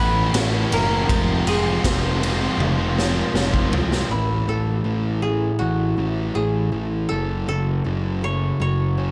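Beginning in light studio reverb, this cathartic, bittersweet fragment of quiet-loud alternative rock sets a dry, woody koto melody played with fingerpicks against distorted riffs from a dark thick fuzz guitar, a scooped high-gain guitar and a very quiet, bright, double-tracked fuzz guitar, anchored by an up-front overdriven fuzz bass and a raw garage drum kit with a punchy kick and a gritty, saturated stone-room sound, whose fill from 2.6 seconds leads at 4.1 seconds into a half-time passage where the drums and those two riffing guitars fall away and a picked steel-string acoustic guitar adds warm arpeggios with audible finger squeak.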